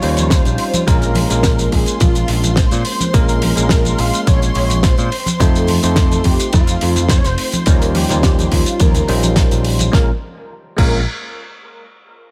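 A straight 4/4 groove at 106 BPM drives this groovy, cosmic nu-disco excerpt in Bb dorian, cut from a longer piece and opening on a drop that runs until 9.9 seconds. A damped 70s drum kit with a fat snare, dark cymbals and a rolled-off top opens the excerpt alongside very quiet maracas and congas played with hard hands, and a punchy, layered electronic kick enters at 0.3 seconds and sits up front. A bright, direct picked electric bass carries the low end from F1 to Bb2, under a bell-like tine electric piano comping with dub echo. Over them, a thick, detuned unison lead built from sawtooth and triangle with a sub octave, moving notch and vibrato sings the melody between F4 and F5, colored by ensemble chorus, 12-bit sampler grit and dub echo. A clear symphonic string section with light vibrato holds sustained chords in the background, pumping against the kick until 9.9 seconds, while the harmony moves through Eb13, Bbm7 and F7 before returning to Bbm7 as a new section begins, all set in a small room ambience.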